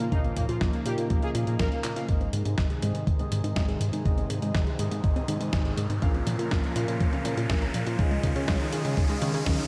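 Italo disco at 122 BPM in a straight 4/4, melodramatic and nostalgic, built on a thumpy, gritty kick and a dusty sampler-style kit of handclaps, hi-hat and medium-tuned snare, with a glossy, dark chorused synth bass underneath and a smooth analog pad holding chords in the background, all drenched in a dreamy hall reverb. A bold, fat synth brass carries the melody over Bbm until a drum fill at 1.8 s, then drops out as a very quiet detuned unison pluck takes up arpeggios from 2.1 s through Ab, Bbm and Dbadd9. A mellow, dark baby grand piano adds filtered, chorused stabs throughout, and an electronic riser builds from 3.7 s to the end of this excerpt.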